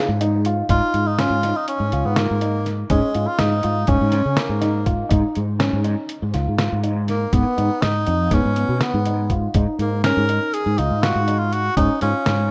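A rough home-demo sound with moderate plate reverb frames this brooding, tense progressive instrumental in 9/8 at 244 BPM (eighths), cut from a longer piece: a dark, mellow baby grand piano plays arpeggios from 0.0 seconds, a round, up-front fretless electric bass with ensemble chorus carries the low end, a compressed, pitched-down, muffled sampler-style drum kit adds a thumpy kick, fat snare and hi-hat, and from 0.7 seconds a clear, punchy tenor saxophone with vibrato takes the pop-style solo melody over chords moving between D#sus2/G#, A#m7/G# and G#m.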